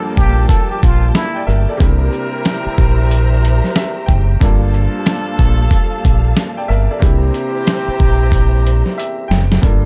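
Boom-bap hip-hop at 92 BPM with a swung 16th feel, moody and tough, this excerpt rides a dark small-room production over a Gm9 to C7 vamp, with an overdriven, gritty sampler-style kit (thumpy kick, medium-tuned snare, hi-hat and shaker) and a deep, round dub fingered electric bass sitting up front, the drums closing on a fill from 9.0 to 9.6 seconds. A plunger-muted jazz trumpet opens with a brief wah-wah phrase of scooped notes with light vibrato and tape echo, ending at 1.4 seconds, while a clear, worn grand piano with a cassette-tape tint comps beneath. Tight pop-style horn stabs carrying tape echo and a lush, bowed string section with a smooth top fill out the harmony, the strings sitting lowest in the mix.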